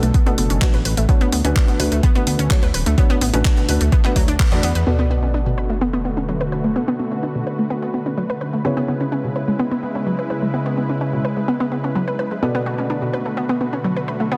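A dense, heavily limited master with light reverb frames this driving, bittersweet progressive house excerpt in B dorian at 127 BPM, where a bright, detuned analog pluck runs arpeggios through chorus, digital delay, sidechain pumping and a filter sweep beside soft, felt-muted upright piano stabs with audible action noise, while an overdriven deep electronic kick, handclaps and filtered hi-hats from a deep house kit and a fat, tube-saturated sawtooth bass drive the opening over Bm7 and Dmaj7, until at 4.9 seconds a sub drop lands and a lush, slow-attack supersaw pad takes up sustained Bm7 and C#m7 chords under its own filter sweep.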